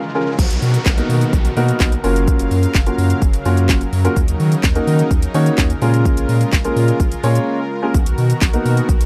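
Dance-pop with a carefree, summery mood, this short excerpt opens on a brief break with a riser and downlifter before a punchy house drum kit, with cracking snare, metallic hats, handclaps, shaker and crash, and a round, deep analog bass arrive at 0.4 seconds, moving through Bmaj7, F#maj7, D#m7 and A#m7 chords. An up-front concert grand piano supplies accompaniment over soft, airy, detuned supersaw chords, with the supersaw, piano and bass all pumping under sidechain compression, and a second short break comes at 7.5 seconds. The sound is dry and close, in the manner of a 1970s studio recording.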